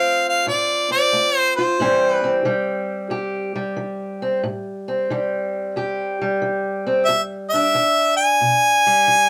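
Swung eighths in 4/4 carry this smoky, mournful acoustic country blues excerpt: a dark, boxy fingerpicked parlour steel-string guitar plays throughout, up front, beneath a clear, up-front solo harmonica with light vibrato, soft attack and scooped, jazz-style notes that sounds from the start until 2.4 seconds and returns at 7.0 seconds, as the chords move from Dm7 to Am7 and on to E7#9 in a moderately ambient room where the players perform live together.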